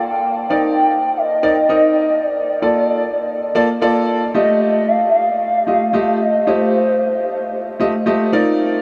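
Soaked in a huge, dreamy ambient reverb, this danceable, late-night funk fragment at 113 BPM carries a gliding, warbling portamento lead with a vintage, mellow tone, chorus and tape echo, which sings the melody from 0.0 to 7.5 seconds over an up-front concert grand piano with a smooth, deep bass that enters at 0.5 seconds and moves through Cm9, Bbmaj7 and F9.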